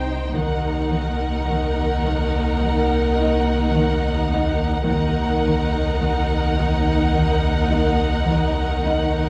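A dark, up-front violin section carries the second line of this uneasy, ominous cinematic fragment, its bowed tone expressive and soft in attack with vibrato. Above it, a second violin section sings the melody high and smooth, even and lush. Beneath them, one cello section plays a riff with expressive vibrato, while another sits in the background holding the bass line, and a deep, full sine sub bass drones on a single low note throughout. A very quiet, woody double bass section joins at 0.4 seconds on an E-flat minor chord and stops at 6.0 seconds. The strings sound in a reverberant recital hall with vinyl crackle, and the passage is cut from a longer piece.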